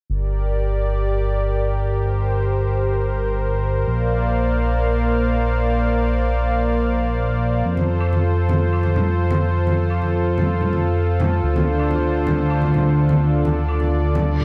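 A dark, warm mix with light reverb frames this bittersweet, expansive progressive house passage at 127 BPM in G minor, cut from a longer piece. A smooth, detuned sawtooth pad with chorus and a slow attack holds sustained chords up front, moving from Gm through Bbadd9 and F to Dm7, while a fat, thick analog bass with tube saturation and a fast attack sits alongside it. Ringing congas and woodblock, played with soft hands in a distant large room, join in the background at 7.8 seconds, and an electronic reverse cymbal appears at 14.3 seconds.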